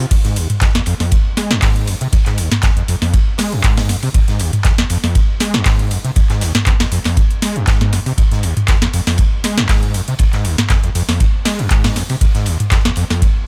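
A deep, up-front electronic kick drives this gritty, hypnotic acid house excerpt at 119 BPM in 4/4, with a light 54% swing on the 16ths. A booming, tape-warm analog drum machine adds a crisp snare, handclaps, metallic hats, toms and crash, with a short room on the snare, clap and hats. A squelchy, resonant sawtooth acid bass riff in F minor sits prominently from 0.0 seconds, its fast-attack filter plucks distorted, chorused and sidechain-pumping. Far back, an oversized low-tuned acoustic kit with a fat snare, dark cymbals, hi-hat and ride fills a bright stone room, all within a small room ambience.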